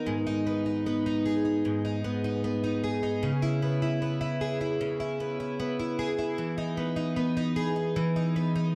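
A straight 4/4 pulse at 76 BPM carries this haunting, hazy dream pop fragment in G# minor, where a lone picked, plugged-in twelve-string acoustic guitar sits up front with a woody, boxy, octave-doubled shimmer from old strings, colored by subtle chorus and tape echo in a wet, dark booth ambience, moving through G#m, C#m7 and Emaj7 across its 8.8 seconds.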